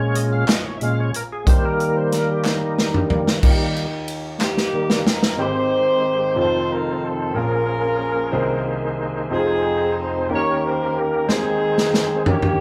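A slow 6/8 sway at 61 BPM, counted in dotted quarters with a straight feel, sets up this reverent yet hopeful gospel passage, cut from a longer piece. A bright, reedy tonewheel organ sits up front with sustained chords, lightly overdriven with key click, chorus vibrato and a fast-spinning rotary speaker, and it carries a solo through the opening sections. Beneath it, a woody upright piano with long sustain plays accompaniment, while a natural country drum kit with bright cymbals, a medium-tuned snare and a punchy kick adds fills, joined early on by hollow group handclaps from a small room. A mellow horn section with light vibrato takes the melody from 4.4 s, sounding distant and roomy though placed up front. The drums stop at 5.4 s as the harmony moves through Abmaj7, F7, Bbm7 and Bbm11/C, then return with a fill at 11.3 s over a closing Ab/Eb. It all sounds like a band playing live in one moderately reverberant studio room.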